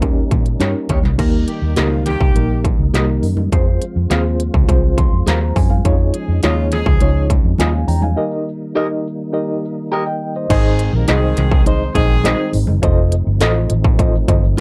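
A dark, close production with little reverb frames this short, uplifting cut of uptempo 1960s-style soul at 103 BPM in 4/4, played straight and made for dancing. Up front, a distorted, clanging industrial drum kit with smooth hats and a crash cymbal drives beside a round, foam-muted electric bass, while very quiet, ringing congas sit softly in the background. A reedy electric piano with fast tremolo carries the accompaniment and steps out for a fill at 4.7 seconds, and a percussive tonewheel organ holds mellow sustained chords through chorus vibrato and a slow rotary speaker. An electric guitar through a small old amp, slightly broken-up and compressed, adds picked stabs from 0.6 seconds. A tight horn section with pop-style vibrato plays a second line, appearing briefly near the start and returning at 6.1 seconds, as the harmony moves from Eb7 through Fm and Dbadd9, pauses for a break, and closes on Ab and F7.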